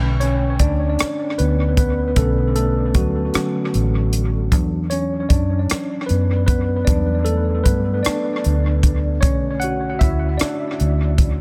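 A slow, straight six-eight sway sets this sultry, yearning R&B fragment, cut from a longer piece. A compact cocktail drum kit enters at 0.2 s with hi-hat, rim clicks and a punchy kick, dry and acoustic, its hits trailed by dub echo. Beneath it, a vintage muted fingered electric bass sits up front, dark, round and foam-muted, with an amped tone. Leading throughout is a worn tine electric piano, slightly out of tune and lightly overdriven, heard as if through built-in speakers and smeared with dub echo as it solos across the whole 11.4 seconds. The harmony drifts from Bm9 to Em9 at 4.5 s and back to Bm9 at 9.2 s, all within a small room ambience and an echo-heavy mix.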